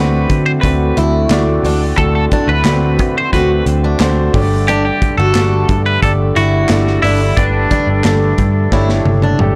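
A bright, twangy twelve-string electric guitar carries the melody with tremolo, over a concert grand piano with audible action noise and long sustain, a full-bodied picked acoustic guitar riff, and a round, foam-muted electric bass sitting up front in this anthemic, warm, piano-driven pop excerpt. A detuned sawtooth pad with chorus and phaser holds sustained chords in the background as the harmony moves from D7 to Gsus2, while a dark acoustic drum kit with a tight kick, handclaps and toms enters at 0.3 seconds and plays a fill from 8.7 seconds. The whole mix carries studio reverb and sounds blown-out and overdriven.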